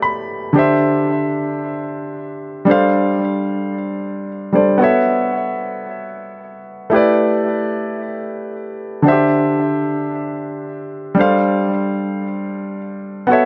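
A moderate plate reverb surrounds this hypnotic, late-night amapiano fragment, cut from a longer piece, with a warm grand piano sitting up front and trailing delay as the only part. It opens with a short piano fill before the chords cycle through suspended ninth voicings, A9sus4, D9sus4, G9sus4 and B9sus4, spread between D3 and B5 in a straight four-four feel.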